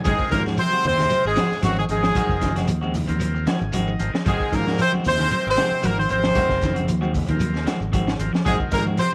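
A brilliant, up-front horn section carries the melody in this joyful, funky afrobeat piece at 114 BPM in Ab mixolydian, over a crunchy, gritty breakbeat kit with a high-tuned snare, a fingered electric bass, two clean semi-hollow guitars (one playing arpeggios with subtle chorus, the other stabs), distant congas, a grainy shekere, a very quiet bright trombone section and raspy tenor saxophone on second lines, and a buzzy vintage combo organ with spring reverb that adds a fill at 3.2 seconds.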